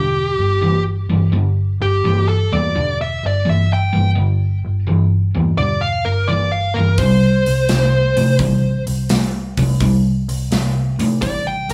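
A swung 4/4 groove at 85 BPM drives this swaggering, raunchy blues rock power trio excerpt with a southern rock flavor, as a dark, compressed fuzz lead guitar carries the melody up front with distortion and digital delay over a crunchy, double-tracked overdriven guitar riff and a round, punchy, foam-muted vintage bass, before a big acoustic rock drum kit with a boomy kick and medium-tuned snare joins at 7.0 seconds, all set in a large studio reverb with small room ambience.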